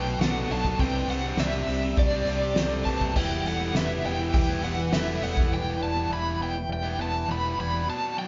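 Cinematic and melancholic, this short post-rock excerpt in E minor at 102 BPM sets a tremolo-laden overdriven semi-hollow guitar melody over quiet, dark clean semi-hollow arpeggios, ringing vibraphone arpeggios with slow motor vibrato in the background, bright distorted riffs from a tight guitar and a thick fuzz guitar, a growling overdriven fingered bass, and a loose indie drum kit with a fat snare, boomy kick and dark cymbals that plays from 0.2 to 5.5 seconds, all captured as a band playing live in one room with moderate large studio reverb over chords moving from Bm7 through Csus2 to Em.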